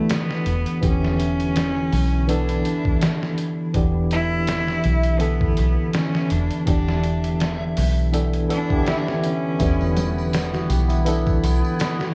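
A worn, warbling cassette sound with drifting pitch and light studio reverb frames this dark, cinematic trip hop excerpt, built on a single Em7 chord with a gently swung sixteenth-note feel. A clear, smooth cello sings the melody with light vibrato and tape echo over a clean tine electric piano with tremolo, a thumpy, gritty, pitched-down sampler-style drum kit, a deep, round, foam-muted dub bass up front and a dreamy, reversed, granular swell in the background. At 9.6 seconds a dark, reedy chamber string section, a soft felt-muted upright piano playing arpeggios with 12-bit grit and audible action noise, and distant, bright tambourine and congas join for the closing moments.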